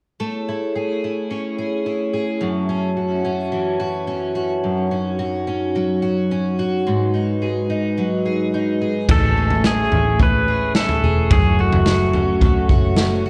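A straight 4/4 pulse at 108 BPM carries this ethereal, blissful dream pop excerpt in A lydian, where a bright, shimmering fingerpicked twelve-string acoustic guitar plays octave-doubled arpeggios through lush chorus and delay, alongside glassy, pure sustained chords from a glass harmonica, moving through Amaj7, F#m7, D#m7/F# and G#m7. At 9.1 seconds a gritty, saturated garage drum kit with a boomy kick and dark cymbals enters up front in a small pumping room, joined by a round, punchy foam-muted electric bass and a twangy, compressed pedal steel guitar carrying the melody with slide and delay. The whole piece sits in a moderate plate reverb with studio ambience and the worn, warbly pitch drift of old cassette tape.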